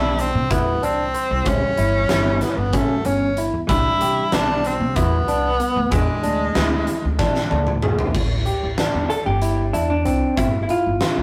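Tense and brooding, this progressive instrumental clip from a longer piece moves in a straight 7/8 at 188 BPM, with a bright, forceful tenor saxophone carrying the melody over barky electric piano arpeggios, dark picked hollow-body jazz guitar, and woody pizzicato upright bass, all through chords such as Cmaj9, A9/G and E7. A huge arena drum kit with a fat snare and punchy kick sits up front, entering at 0.2 s and playing a fill from 7.2 s. The saxophone drops out at 7.5 s, and at 8.2 s the guitar takes a solo over Am7 and G7(no3), all captured in a rough rehearsal-room recording with saturation and wet studio ambience.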